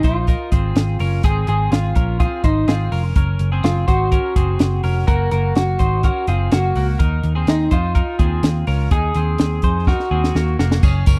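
A slightly broken-up electric guitar melody through a small old amp, with subtle chorus and slapback echo, leads this nostalgic, bright indie pop excerpt at 125 BPM. It sits over a twangy twelve-string electric guitar playing arpeggios in spring reverb, a round, foam-muted picked bass and a dry cocktail drum kit with a high-tuned snare and dark cymbals, all resting on an Abadd9 chord. The dry, close 1970s-style sound features a drum fill from 9.9 seconds, the lead guitar dropping out at 10.6 seconds, and a jingly tambourine entering faintly in the background at 10.8 seconds.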